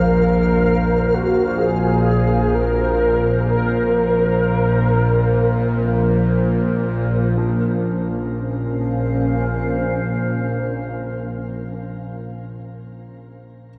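A dark ambient drone in free time and Bb minor, this ominous passage rests on an up-front, string-like bowed drone in the low register, tense and vibrato-laden, beneath a blurred, evolving granular cloud pad that holds Bbsus2 before shifting to Bbmadd9 at 7.4 seconds. A round, horn-like synth lead with a vintage warble carries the melody through chorus, shimmer reverb and tape echo until 6.3 seconds, while a flickering, grainy texture sits in the background and fades out. A very quiet, worn concert grand piano plays deep arpeggios until 13.7 seconds, all set in a wet cathedral reverb.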